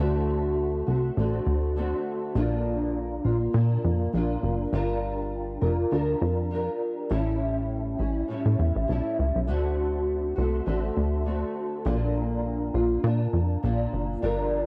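A fingerpicked nylon-string guitar and a plucky analog bass open this mellow, lonely slice of indie and bedroom pop together, both sitting up front for the full 14.7 seconds. The guitar has an acoustic, small sound, colored by an ensemble chorus, a vibrato effect and the softened grain of cassette tape as it carries the accompaniment. Beneath it, the bass is punchy and funky, its filter-pluck tone built from sawtooth, pulse, sine and triangle waves with a wave-folded edge, a fast attack and a decaying tail, thickened by transformer saturation. The harmony moves through D7, Bb, Gm7 and A7 before returning to D7 and Bb, with a gentle swing on the sixteenth notes giving the groove a relaxed lilt. Light reverb and a small room ambience frame this home cassette recording, which is cut from a longer piece.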